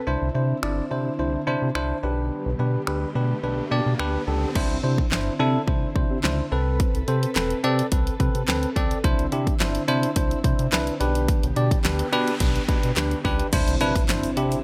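A straight 4/4 dance-pop groove at 107 BPM kicks in at 0.6 seconds on an electronic, layered pop drum kit sitting up front, with a punchy kick, fat snare, hi-hat, handclaps, finger snaps and crash cymbal. The mood is summery and upbeat in C major, the harmony moving between Cadd9, G/B and Amadd9. A chorused synth bass anchors the low end with a retro, glossy, dark tone that keeps evolving through pulse-width modulation and a moving notch, while a bell-like tine electric piano plays clean, direct accompaniment up front. Behind them, a mellow, warbling ensemble organ-string holds soft-attack sustained chords in the background, and the organ-string, electric piano and synth bass all pump against the sidechain. Electronic sound effects sit low in the mix, a riser from 2.0 seconds and a noise sweep leading to an impact at 13.5 seconds, where a very quiet, grainy tube shaker also enters. Light digital ambience gives the mix a polished finish, and the passage is cut from a longer piece.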